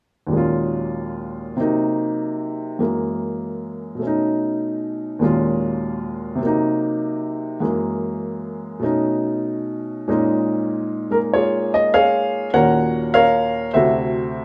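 A warm upright piano plays alone in this short cut from a longer solo jazz piece, set in Bb minor at 99 BPM in 4/4 with a swung eighth-note feel and a loose, rubato sway. The mood is moody yet swinging, and the piano sits up front with an intimate, woody, vintage character, its audible action noise adding a close, human presence to the smooth tone. The harmony opens on a repeating cycle of Ebm11, Cm7b5, Gb9 and B9, circling twice before a new passage arrives at 10.1 seconds. There the chords shift to Bbm7 and Ebm7, ending on D9 at 13.7 seconds. A moderate reverb from a large studio surrounds the instrument, lending the playing a sense of space while keeping its intimacy intact.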